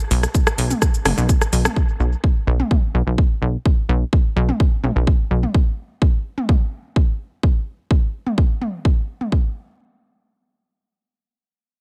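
An echo-heavy digital ambience frames this hypnotic, dramatic melodic techno cut at 127 BPM in straight 4/4, opening on a drop where an up-front, tape-warm electronic kick arrives at 0.3 s with a punchy thump beside a layered house kit of metallic hi-hats, rim clicks, shaker and toms, while a funky sawtooth-and-square analog bass with a fast-attack filter pluck pumps against the sidechain in its low register until 5.5 s.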